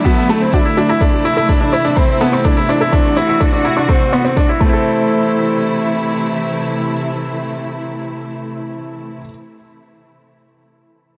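Moving and cinematic, this short cut from a longer piece is piano and strings electronica at 125 BPM in 4/4 with a straight feel, set in A dorian and tuned to A4 = 441 Hz, with the harmony moving from D to Am. A bright grand piano carries a riff from A3 to A4 throughout, up front and intimate, with audible action noise, long sustain and a digital delay. Beneath it a muted studio string section holds dark, veiled sustained chords from C3 to F#4, bowed con sordino with vibrato and a soft attack, lush yet distant. A very quiet analog pluck plays nasal, round arpeggios from F#4 to C6 with chorus and a filter sweep, stopping at 5.1 seconds. A deep, layered electronic kick sits up front alongside a produced shaker, both dropping out before the second section begins at 4.8 seconds, leaving piano and strings to finish in a light studio reverb.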